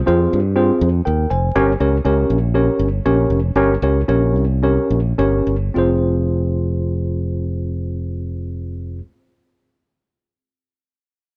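Uptempo 1960s-style soul in F minor, passionate and driving, moving in 4/4 between 103 and 122 BPM and slowing down from 1.5 to 5.8 seconds as the chords shift from Fm to Gdim and back to Fm. A mellow tine electric piano, worn and slightly out of tune yet clean and up front, carries the accompaniment alongside a fingered electric bass that sounds round, punchy and direct, both playing from 0.1 to 9.0 seconds. Light reverb frames this short cut from a longer piece, tuned to A4 = 439 Hz.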